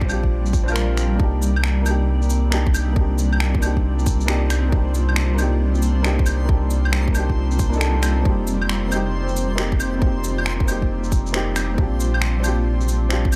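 A tight, tape-warm electronic kick sits up front in this rainy, wistful future garage excerpt at 136 BPM in C minor, swung on the sixteenths, dropping out briefly from 0.8 to 1.2 seconds, while layered shaker, claves, finger snaps and cabasa share its large-room character. A round, sine-like sub bass with tube saturation and a felt-muted upright piano with analog delay pump alongside a cloudy, detuned granular pad, all three breathing with sidechain movement through chords of Bb6, Cm7 and F9sus4. From 2.4 seconds a bright, reversed, dreamy texture hovers in the background, its reverb adding to the digital ambience.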